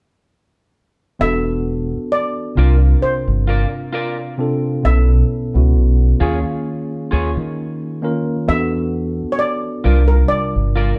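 At 1.2 seconds the steel pan, tine electric piano and deep dub electric bass come in together on an E9sus4 chord, opening this sultry, soulful R&B excerpt at a slow 66 BPM in 4/4 with a gentle sixteenth-note swing. The steel pan carries the melody up front, its metallic, shimmering tone dark and smooth, played with medium rubber sticks. Beneath it the electric piano plays the accompaniment with a worn, slightly out-of-tune character that stays clean and direct. The fingered bass sits loudest in the mix, round and amped, anchoring the low end. From 2.6 seconds an electric guitar adds a second line through a small old amp, twangy, compressed and slightly broken-up, bathed in spring reverb. The harmony moves through suspended ninth chords, E9sus4, C9sus4, B9sus4 and D#9sus4, before circling back, all captured as a band playing live in one room with light reverb.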